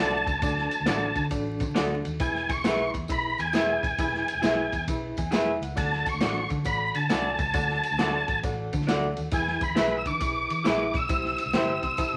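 Vinyl crackle and a wet small room give this joyful, uptempo 1960s-style soul excerpt a vintage sheen, with a clear tonewheel organ carrying the melody up front through chorus vibrato, key click and a fast rotary speaker. A reedy electric piano, lightly overdriven with fast tremolo, accompanies and adds fills at 4.9 and 11.5 seconds, while a slightly broken-up, lo-fi electric guitar plays picked stabs through a small old amp. A dark, round, foam-muted fingered bass and a swinging big-band drum kit with punchy kick, ride cymbal and medium-tuned snare drive the groove, and a jingly tambourine sits in the background.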